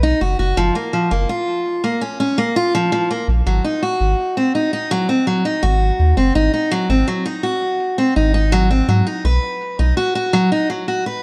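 Hopeful and delicate, this short folktronica passage moves at an unhurried 83 BPM in a straight 4/4, with a picked steel-string acoustic guitar up front playing warm, fresh-stringed arpeggios through a tape echo over chords of B, a rootless Gbmaj7 and Ab7. Beneath it, a deep, round sine sub bass with a fast attack and mellow sustain holds the low end until 9.9 s, leaving the guitar to ring out alone until 11.2 s. A light reverb gives the whole a soft, intimate space.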